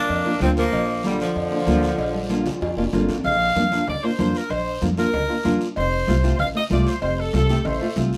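Sunny and danceable, this brief excerpt of straight-feel cumbia at 190 BPM in Bb major sets an up-front, tight saxophone section with light vibrato on the jazz-style melody. A gritty, edgy tenor saxophone adds a solo second line with scooped notes until 2.9 seconds, returning at 7.7. Beneath them sit woody, thumpy pizzicato upright bass on gut strings, small fingerpicked nylon-string guitar with fresh strings, ringing metal-shell cowbell and timbales heard distant in a large room, bright, damped congas struck with hard hands in the background, and a raspy guiro, all in moderate studio reverb as a drum fill leads into a new section and the harmony moves from Bb to F at 5.8 seconds.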